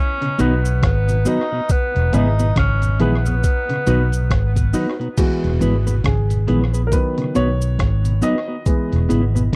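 Laid-back and warm, this short cut from a longer roots reggae piece moves at 69 BPM in 4/4 with a 16th-note swing, alternating between B and E chords. A clear, vintage-toned tenor saxophone opens the melody with scooped notes trailing a dub echo, stopping at 4.7 s. Under it, a compressed, pitched-down sampler-style drum kit sits up front with a muffled, thumpy kick, hi-hat, rim click and crash, all touched by tape echo. A round, foam-muted fingered electric bass carries the low end, while a dark, clean electric guitar comps through spring reverb and dub echo, and a very quiet hollow-body guitar adds arpeggios. A soft, flute-like tonewheel organ with key click and slow rotary speaker hangs in the background, a close, dry cabasa shakes along, and a woody upright piano with audible action noise plays stabs before taking an intimate solo from 5.2 s. The sound is a dry, close 1970s-style studio recording.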